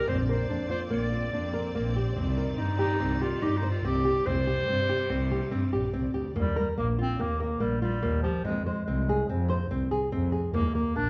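Contemporary chamber music in 5/4 at 143 BPM in C minor, hypnotic and pensive, with a soft-attacked clarinet carrying the melody over thumb-plucked nylon-string guitar arpeggios, a bowed, nasal double bass and a deep, very quiet frame drum played with soft hands. A lush, biting string section holds sustained chords until 6.3 seconds, leaving the clarinet, guitar, bass and drum to continue as the harmony moves through Ebadd9 and Fm. The group sits in a wet recital hall reverb, and this excerpt is cut from a longer piece.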